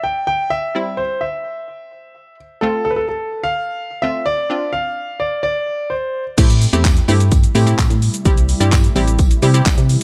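Dance-pop with a confident, energetic drive, opening on a clear, intimate concert grand piano carrying the melody through a digital delay over crisp, detuned wavetable chord stabs that pump with sidechain compression, moving through Am7, C, F and Dm7. At 6.4 seconds the drop lands just after the piano falls away, with a punchy, round FM bass and an up-front electronic drum kit of metallic hats, handclaps, shaker and crash arriving, joined by a faint jingly tambourine. A shimmering, ethereal pad with chorus and its own reverb rises into the background from 7.5 seconds, all within a dark, dry production.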